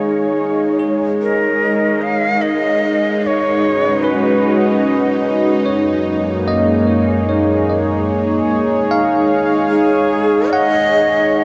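A breathy, bright shakuhachi with a crisp, chiffy attack and tape echo sings the melody from 1.2 s and returns at 9.7 s, floating over a smooth, chorused analog pad of sustained chords, a tense, detuned bowed-like drone with phaser and vibrato, and a bell-like tine electric piano whose tape-echoed arpeggios fade in, in a serene, reflective ambient piece in G# dorian at 74 BPM in 3/4, set in a vast, echoing space with huge reverb.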